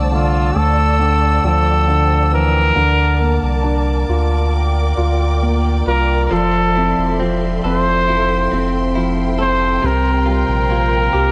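A clear, up-front trumpet carries the melody in this hopeful, tender pop ballad, singing in a vintage pop style with light vibrato and scooped notes. Beneath it, a concert grand piano plays intimate accompaniment, polished and present, with long sustain and audible action noise. A round, sine-like sub bass sits deep and up front, while a dark, woody string section holds lush bowed chords with vibrato and a smooth top. At 6.3 seconds, a clean electric guitar, recorded direct and compressed, enters in the background with picked arpeggios. The fragment moves at a slow 68 BPM in 4/4 in F major through Dmadd9, Bbmaj7, Fmaj7 and C7sus4, set in light reverb and studio ambience.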